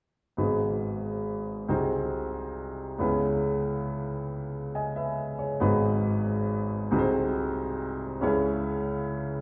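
A slow, straight 6/8 pulse at 46 BPM in dotted quarters carries this solemn, soulful gospel fragment in G# minor, tuned to A4 = 444 Hz, where a lone upright piano with a woody, natural, up-front tone and long sustain spans G#1 to G#5 over G#m7, G#7/B# and C#m7 chords that begin again at 5.6 s, set in a resonant concert hall with a 1.9-second reverb tail.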